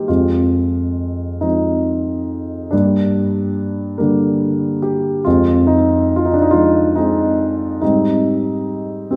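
In a slow, rubato 6/8 that moves at about 46 beats per minute counted in dotted quarters, this short fragment of a longer classical piece unfolds with a reflective, lyrical freedom. A solo concert grand piano carries everything. Its dark, mellow tone sits up front, and its deep bass anchors a range from F2 to G4. Set in F dorian, the harmony moves from Fm7 to Gm, returns to Fm7 at 5.3 seconds, and opens onto Abmaj7 at 7.8 seconds. A lush concert hall reverb with a long tail surrounds the piano, giving the sombre, inward mood a spacious, church-like resonance across its 9.2 seconds.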